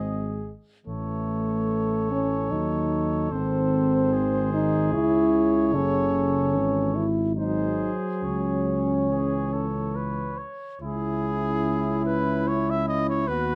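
Grave and heroic, this rubato classical brass quintet excerpt in triple time sets a bright trumpet melody with light vibrato over a mellow, punchy second trumpet with a vintage tone, while a French horn with gentle vibrato carries the strongest accompanying voice, a trombone with light vibrato sits in the background, and a dark, smooth-topped tuba holds the bass up front, all captured by close, detailed microphones in light reverb.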